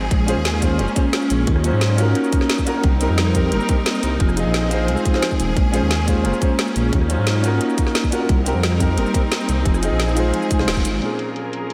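Rolling and dreamy, this liquid drum and bass passage opens straight into a drop, with a lush symphonic string section holding sustained chords that pump and sit behind a low-pass filter, while a dark, detuned saw bass rumbles up front. A tight, overdriven electronic kick leads the drums, layered with a garage kit of woody snare, metallic hi-hats, rim click and shaker, all muffled by filtering and given a small-room character. A vibraphone traces ringing arpeggios through tape echo, an intimate grand piano with audible action noise adds chorused accompaniment trailing into diffuse delay, and the reverb-soaked hall mix arrives at a band accent at 10.7 seconds.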